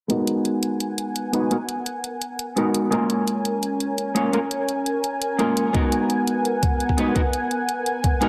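A lush hall reverb and digital ambience wrap this short cut from a longer liquid drum and bass piece, giving it a rolling, lush mood in a straight 4/4. Up front, a dark, clean archtop guitar plays picked accompaniment through a low-pass filter and digital delay, while a thick, airy unison pad holds sustained chords with chorus, detuned sawtooth and square-wave layers, a soft attack and a touch of vintage 12-bit sampler grit. Both the guitar and the pad carry filter sweeps across the whole passage as the harmony moves from G#m9 to A#m7 and back to G#m9. A layered electronic hi-hat with overdrive ticks along throughout, re-recorded in a small room. At 5.7 s a compressed, pitched-up, thumpy electronic kick drum with tape-warm grit arrives up front in the mix, anchoring the final seconds.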